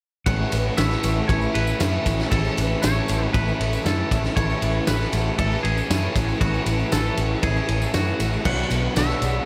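A straight 4/4 pulse at 117 BPM drives this wistful, blissful shoegaze and dream pop piece in A major, led by a loose indie drum kit up front with a fat snare, punchy kick and dark cymbals, alongside a round, foam-muted vintage bass and a jingly tambourine in the background. A twangy electric guitar carries the melody through analog delay, while a shimmering, octave-doubled twelve-string acoustic picks very quiet arpeggios, a biting overdriven guitar plays a riff through lush chorus behind them, and a mellow, clean electric guitar adds its own riff bathed in reverse reverb. The dreamy mix is soaked in huge ambient reverb, and the harmony rests on A before moving to Bmadd9 at 8.5 seconds.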